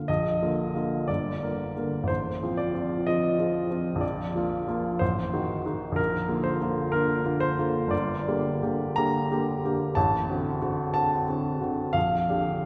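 Bathed in a wet church reverb, this stormy, brooding excerpt of a romantic character piece features a clear, polished baby grand piano played up front and alone at a slow 61 BPM in 2/4 with uneven rubato beats, ranging from deep G1 to Bb5 and darkening from Bb major into G minor at 7.9 seconds before settling on a G minor chord at 11.9 seconds.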